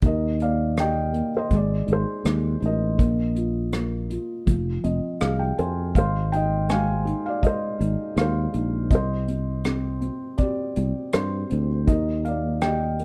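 This excerpt from a longer piece opens with all three parts together: a felt-muted upright piano carrying the melody, a fretless electric bass, and a soft brush drum kit, settling into an intimate, nostalgic acoustic folk-pop ballad in Eb major at 81 BPM in a straight 4/4. The piano sounds muted and mellow through its thick felt, sitting up front with a plate reverb that gives its melody a gentle halo as it moves between Eb3 and Ab5. Beneath it, the fretless bass is round and dark, heard direct and amped with a punchy presence in the low register from F1 to G2. The brushed kit adds hi-hat, rim click and a punchy kick, its rolled-off top and small-room character giving it a distant, roomy quality even as it stays close in the mix. Around 4.5 to 6.0 seconds the piano slips in a short fill over the Fm chord, and the harmony drifts through Ab, Bb5, Ab6 and Cm before returning to Eb near 11.9 seconds, all wrapped in a light overall reverb.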